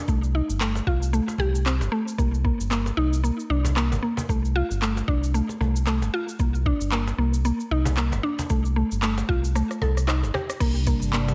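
Mystical and warm, this short cut from a longer organic downtempo piece moves at 114 BPM in 4/4 with a swung sixteenth-note feel, set in C dorian. A woody, mallet-like synth pluck plays up-front arpeggios with a short, percussive decay, thickened by chorus and tape echo, over a round, deep analog bass that pumps against the sidechain. The beat pairs a soft, tape-tinged electronic kick with a produced kit of crisp hi-hats, cabasa, handclaps, rim clicks and crash cymbal, both sitting in studio reverb, while a saturated cajon played with soft hands joins at 0.8 seconds. A drum fill arrives at 9.6 seconds, and at 10.8 seconds a warbly, nostalgic lo-fi pad with a slow attack and long release slips in with dark sustained chords. The harmony moves through F9, Cm9 and Dm7 before landing on C7sus2, all under a light overall reverb.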